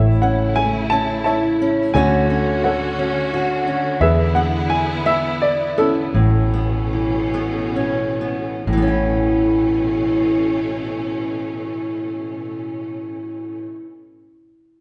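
A reverberant recital-hall space surrounds this nostalgic, intimate acoustic folk-pop ballad excerpt in 3/4 and A major, moving at a gentle 63-88 BPM and slowing down from 4.0 to 8.7 seconds. An upright piano, woody and slightly detuned with short sustain, carries the melody until 7.7 seconds. Up front, a fingerpicked steel-string acoustic guitar with old strings gives a dark accompaniment, while a distant studio string section holds bowed chords with vibrato, soft attacks and expressive portamento. Beneath them, a foam-muted fingered electric bass sounds round, amped and punchy. The harmony moves from A through Dmaj7 and E7 to Aadd9 before a second section begins.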